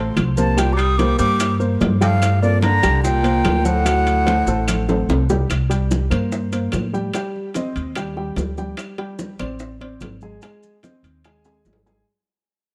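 A dark baby grand piano with audible action noise and a woody, up-front pizzicato upright bass open this sultry, sophisticated Afro-Cuban jazz excerpt, joined at 0.2 s by bright background congas, round low-tuned bongos, ringing metal-shell timbales, distant claves in a large room and grainy maracas, while a breathy, close-miked concert flute carries the melody over a punchy, scooped baritone saxophone with vibrato, both bathed in tape echo until 5.1 s, before a drum fill leads into a fade-out from 5.5 s in a dry, close 1970s-style studio sound.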